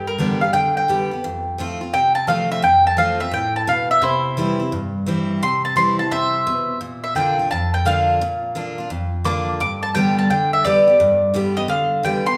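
A swung 172 BPM 4/4 country groove in C major carries this down-home, nostalgic excerpt, where a woody, double-strung mandolin takes the melody as a solo from 0.0 to 12.4 seconds over a bright, full-bodied jumbo steel-string acoustic guitar picking the accompaniment through G, F, C and Bb, both up front in a wet, large studio reverb that captures the band playing live in one room.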